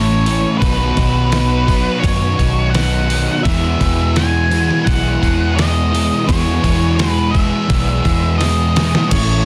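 A detuned 8-bit drum machine sits up front with a thumpy kick, medium-tuned snare, hi-hat and crash, entering at 0.3 seconds and rolling into a fill at 8.4 seconds, in this dreamy, blissful shoegaze and dream pop fragment where a fuzzy octave-fuzz lead guitar sings its melody through slapback echo over a background haze of a dark, biting overdriven guitar with reverse reverb, a hollow-bodied semi-hollow guitar drenched in lush chorus and a sludgy, double-tracked distorted guitar, all moving through A, Badd9 and E above a round, foam-muted vintage fingered bass, with a dry room sound and a dense, heavily limited modern master.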